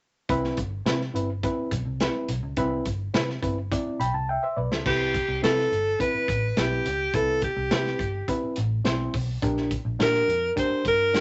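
A straight 4/4 groove at 105 BPM drives this joyful, uptempo 1960s-style soul excerpt in C major, carried from the first moment by a crunchy breakbeat drum kit with a tight kick, a medium-tuned snare, dark cymbals, hi-hat and crash, all saturated and gritty with a rolled-off top. Beneath it, a vintage muted picked electric bass sits low and round, its foam-muted, amped tone adding a dark foundation. A reed electric piano fills out the accompaniment with a reedy, worn sound, lightly overdriven through its built-in speakers and slightly out of tune, moving from Cmaj7 and shifting to Bb6 at 9.4 seconds. After a drum fill closes the opening passage, a breathy alto saxophone enters at 4.9 seconds as the lead, bright and intimate with vibrato, a soft attack and a whispered, jazz-style delivery that stands out above the band. The whole piece sits in a moderate small room, with a mellow top end and an up-front, cozy feel.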